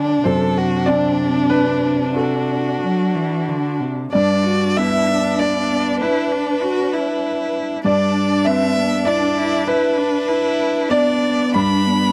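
Neoclassical piano and strings in G major, hopeful and tender, moving in a rubato 3/4 at around 89-99 BPM in this short excerpt cut from a longer piece. A solo violin carries the melody with vibrato, portamento and a soft attack, sitting close and up front over a rich, focused cello second line, while an up-front grand piano and an expressive viola staying on a single D4 fill out the accompaniment. The dry, close studio sound has a 1970s character, and the harmony moves from D7/F# to G as the second section begins at 4.1 seconds.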